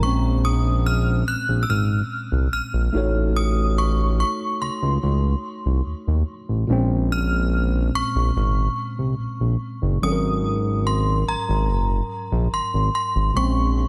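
Longing and sensual, this contemporary R&B excerpt drifts at 72 BPM in 4/4 with a straight feel in Bb minor, cut from a longer piece. A chiming, inharmonic synth chime carries the melody high in its range, its ringing FM tones decaying into an ensemble chorus and a diffuse ambient delay. Beneath it, a mellow tine electric piano supplies the accompaniment with a worn, slightly out-of-tune character, clean and direct, moving through Bbm9, a rootless F7b9b13/A, back to Bbm9 and on to Ab9sus4 before settling on Bbm9 at 13.4 seconds. The smooth synth bass sits up front, a detuned, saturated blend of sawtooth and square waves with a fast attack, sustained notes and vibrato that gives the low end an evolving glow. A moderate plate reverb with a 3.5-second decay soaks the mix, lending the whole passage a dreamy atmosphere.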